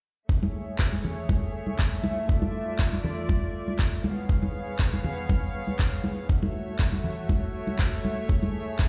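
This groovy, sunny nu-disco excerpt opens at 0.3 s with a gritty, thumpy electronic kick drum set up front, alongside a dark studio string section holding sustained chords from a distance. The strings are bowed with light vibrato and carry a reedy, gut-string, period-style tone, softened by a low-pass filter and pulsing with sidechain pumping. Close, dry congas with a thick-skinned, medium-tuned sound join at 0.4 s, and layered electronic handclaps arrive at 0.8 s. The harmony moves from Amaj7 through Dmadd9, C#7 and F#m7 before returning to Amaj7, all in a steady, straight 4/4 metre. The whole mix sounds as if played on a big sound system in a bare room with stone-room reverb, giving it a small-room ambience.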